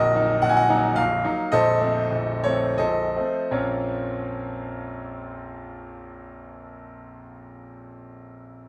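A bright concert grand piano sits up front in light reverb, its brilliant tone and deep bass ringing with long sustain across an open sound. This short classical fragment, cut from a longer piece, is a romantic triple-time dance in Bb minor with dotted rhythms, its mood capricious and wistful. The solo piano spans Bb0 to Ab5, and the tempo moves freely with rubato somewhere between 77 and 119 BPM in 3/4. Over the first 3.5 seconds the pace slows as the harmony moves from Ebm over Bb to F7 over Bb. A second passage begins at 3.5 seconds, settling on Bb minor, and the piano plays through to 8.7 seconds.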